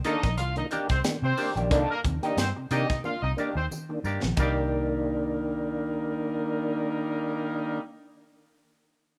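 Funk with a cool, swung sixteenth-note feel, cut from a longer piece and heard in a rough home demo mix with a small-room sound. A tight drum kit with a high-tuned snare, quiet low-tuned congas and a jingly tambourine in the background drive the opening, with a drum fill from 3.0 s before the percussion drops out by 4.7 s. Meanwhile a round, foam-muted fingered bass, a dark, clean hollow-body jazz guitar through wah, a mellow, up-front tonewheel organ stabbing through a slow rotary speaker, and a clear, tight horn section playing a second line in octaves carry on, with plate reverb on the guitar, organ and horns.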